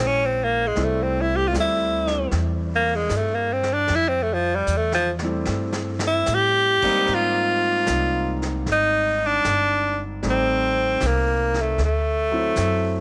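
An edgy, forceful tenor saxophone sits up front in this intimate, romantic jazz ballad, carrying the melody with punchy, scooped notes and playing as a solo through the first 7.1 seconds. Beneath it, a concert grand piano with deep bass, long sustain and audible action noise supplies polished accompaniment, moving from a rootless Gb9 into Fmaj9 and later through Abmaj9, Am7b5 and D7. A woody, dark upright bass, plucked pizzicato on steel strings, anchors the low end from the start. A vintage kit played with brushes enters at 0.8 seconds, its dark cymbals, medium-tuned snare and punchy kick rolled off at the top and set mid-forward in a studio room, with a drum fill from 4.7 to 6.3 seconds. The eighths are swung, and light reverb adds gentle space to this brief cut from a longer piece.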